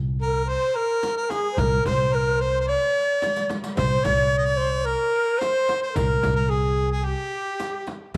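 A breathy, end-blown ney carries the melody up front with vibrato and a soft attack over a woody, thumpy pizzicato upright bass in this hypnotic, soulful Arabic maqam ensemble piece in C maqam bayati at 110 BPM, cut from a longer work and set in light reverb, joined by a smooth-topped harmonica second line with light vibrato, a riq's bright jingles in the background, a very quiet clay-shell darbuka entering at 0.8 s, and a deep, close and dry frame drum from 1.0 s, with a drum fill at 3.2 s.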